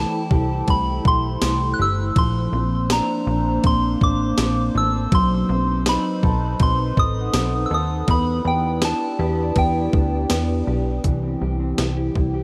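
A lightly reverberant haze frames this blissful, ethereal dream pop excerpt in C lydian at 81 BPM, where a pure FM synth bell carries the melody through chorus and tape echo above a warbling, nostalgic tape-like pad, dark fingered arpeggios from a mellow electric guitar drenched in lush chorus, a punchy, wave-folded analog bass, and a thumpy, up-front 80s drum machine with a gated reverb snare, while a vintage, metallic vibraphone rings faintly in the background, returning at 5.9 seconds as the chords move from C6 through Bbmaj9, B7b9 and Em7 before settling on C at 11.0 seconds.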